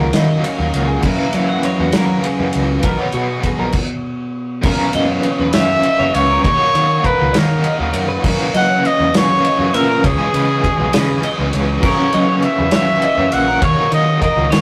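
A clear, punchy trumpet with vibrato and a smooth top enters at 5.5 s and carries the melody up front in this wistful, intricate excerpt of math rock and Midwest emo in a straight 6/8, just as one of two bright, twangy, compressed twelve-string electric guitars gives up its accompaniment while the other keeps picking arpeggios in the background. Underneath, a double-tracked, overdriven stack guitar drives a riff with tremolo, a fuzzy, direct-and-amped bass holds the low end, and a loose acoustic drum kit with a punchy kick, medium-tuned snare and dark crash and ride cymbals pumps in its small room. The band breaks for a stop from 3.7 s to 4.6 s, and the whole take has the rough, saturated feel of a rehearsal room with moderate reverb.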